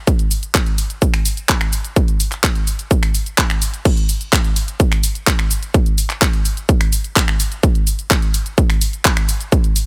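Triumphant and euphoric, this EDM excerpt drives along at 127 BPM in a straight 4/4, built entirely from percussion in a dry, up-front sound. A punchy, tape-tinged electronic kick drum anchors the groove from 0.1 to 9.6 seconds. Over it, a layered, produced pop kit adds cabasa, hi-hat, finger snaps, handclaps and crash cymbal until 9.9 seconds.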